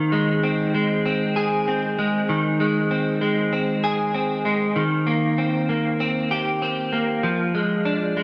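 A clean electric guitar opens the recording alone and carries it all the way to 8.2 seconds, a short dream pop fragment cut from a longer piece. Its picked tone is warm and up front, colored by an ensemble chorus and a delay that give it a shimmering, doubled halo. The harmony drifts from Ab over Eb to Eb6 at 4.8 seconds, then settles on Fm6 at 7.2 seconds, keeping the mood floating and blissful. The guitar sits in a middle register, and a moderate, lush hall reverb with a long 2.2-second tail wraps the whole passage in a soft, spacious glow. At an unhurried pace in straight 4/4, it feels like a gentle, suspended moment rather than a statement.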